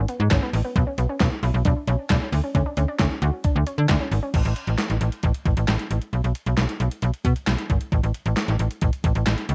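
A straight 4/4 synth-pop groove comes from an up-front, sampler-style 80s drum machine, with a thumpy kick, gated-reverb snare, handclaps, hi-hat and crash, all carrying a tape-softened sheen. A snappy, metallic FM bass drives underneath for the whole passage, while a quieter, round and nasal analog pluck arpeggiates over E/G#, Bmadd9 and Dmaj7 through chorus, cassette-tape color and analog delay, then stops at 4.3 seconds as the chords drop out. The mood is wistful yet bright, with a dry, homespun cassette feel to this short cut from a longer piece.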